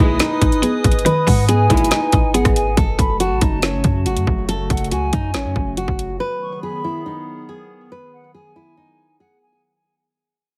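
A half-time trap groove at 140 BPM in 4/4 drives this brooding, hard-hitting hip hop passage in G# phrygian, cut from a longer piece. The up-front electronic kit pairs a hard-clipped kick and woody snare with metallic hats and a tape-tinged edge, while a clean, boomy sine 808 bass with a fast attack and dark decay anchors the low end until 6.2 seconds. Out front, a bright, full-bodied nylon-string guitar carries the melody with thumb-plucked notes and audible finger squeak, shadowed by a distant, mellow concert flute with vibrato on a higher second line, both through digital delay. Beneath them, a round FM mallet-like pluck with a noise layer adds chorused accompaniment in the background until 2.8 seconds, bowed sul tasto studio strings add floating, soft stabs that end by 1.9 seconds, and a detuned, flute-like pad holds slow-attack chords. Harmony moves from G#m to F#madd9 and back to G#m as the passage fades out from 2.8 seconds, all under a heavily compressed, radio-like studio sound.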